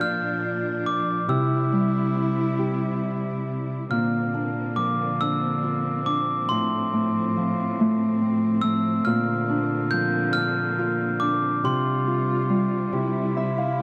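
A bell-like glockenspiel, played with soft plastic mallets, carries the mellow melody of this gentle, sleepy children's lullaby, drifting in a rubato 6/8 at 46 BPM over chords moving from Bb and C through Bbadd9, F/A and Csus4. A fingerpicked Celtic harp rings out close and acoustic beneath it, while a rich, smooth bowed string section with vibrato holds sustained chords. The glockenspiel stops at 12.6 seconds, and the harp adds a brief fill from 12.9 seconds in this dry, close 1970s-style studio sound with light reverb, cut from a longer piece.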